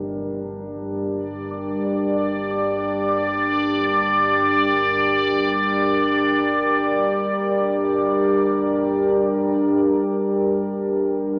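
A drenched cathedral reverb with a five-and-a-half-second tail surrounds this recording, which carries the narrow, boxy tone of an AM radio. It is a dark ambient drone piece in free time, ominous and vast, resting on G minor with tuning set to A4 = 444 Hz, and it is cut from a longer piece. Up front, a deep, moody pad of sawtooth and sine layers with a sub octave holds sustained chords between G3 and Bb4, its slow attack, long release and chorus lending it a mellow glow. Beneath it, in the background, a rumbling triangle-and-sawtooth drone sits low between G1 and G2, colored by phaser and subtle chorus. From 1.5 s, a bright, resonant sawtooth texture bubbles on D5 through random filter steps until 9.2 s, when it stops and a filter sweep moves across the synth drone for the closing passage.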